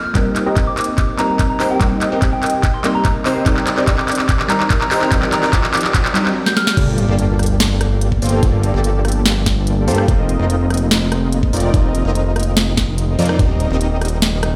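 A lush hall reverb and the boom of a large room give this future bass excerpt a spacious, emotional sheen, sitting in G minor at 145 BPM with a half-time feel. An ethereal, very quiet pad holds sustained chords throughout, while a pure FM bell carries the melody and a soft, round, wave-folded pluck adds dark accompaniment. Both of these light up the first half with chorus, sidechain pumping and tape echo before falling away just ahead of the drop. A mellow but punchy supersaw stab plays the riff across the whole passage, its filter sweeping through the build-up as a background riser climbs and drum fills mount. At 6.8 seconds the drop lands with an impact and sub drop, and a fat, evolving, detuned analog bass arrives up front, pumping against the knocking kick. Crisp hats, a sharp snare, claps, rim clicks and crashes from the trap kit drive the section over chords moving from Gm9 to F7sus4 and back to Eb6.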